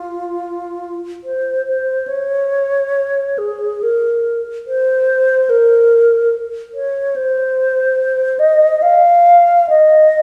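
A lone alto flute with a wooden head opens the recording at 0.0 seconds and carries the whole 10.2-second passage by itself. This is an expressive classical solo in free time, its mood serene and nostalgic, with the line moving between F4 and F5. The flute's tone is airy and bright, colored by vibrato, with soft attacks and lifted highs that sit up front. Around it, a recital hall adds a wet reverb with a decay of about 1.6 seconds, and the room is heard from further back. The passage is cut from a longer piece, so it feels like a brief glimpse of a larger work.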